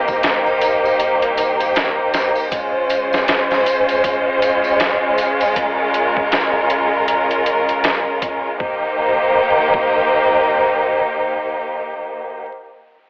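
A cinematic, smoky trip hop excerpt cut from a longer piece, swung on a slow four-beat pulse and drenched in a moderate echo-chamber reverb, with vinyl crackle and a telephone-filtered tone over the whole mix. Up front, a rich studio violin section holds sustained bowed chords with soft attacks and expressive vibrato, moving from Cm7 to Dbmaj7 and returning to Cm7 at 8.6 seconds as a brief second section begins. A sampler-style boom bap kit, compressed, pitched down and gritty, sets a thumpy kick against a medium-tuned snare and hi-hat in a small room, its tape-warm grain sitting just under the strings until it stops at 10.0 seconds. A bright acoustic tambourine and triangle, struck with hard hands, ring in the background until 5.5 seconds. Beneath it all, a deep, round dub sub bass with a mellow, square-edged tone sustains softly in the background for only the first 2.0 seconds.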